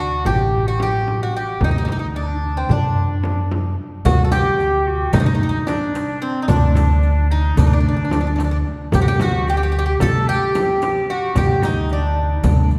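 Festive and warm, this short cut from a longer Turkish makam ensemble piece moves in a straight 9/8 metre, heard from further back in a wet concert hall whose reverb rings for about 2.1 s. A bright, metallic Greek bouzouki carries the melody with picked double strings, some of them doubled at the octave. A clarinet in a jazz style adds a second line, with vibrato and scooped notes, its tone sounding distant and roomy in the hall. The upright bass sits up front, plucked and woody on steel strings, giving the ensemble a firm low anchor. In the background, a crisp metal-shell darbuka and a frame drum played with soft hands drive the rhythm, joined at 4.0 s by a close, dry riq with dark jingles as the music moves into a new section at 4.1 s.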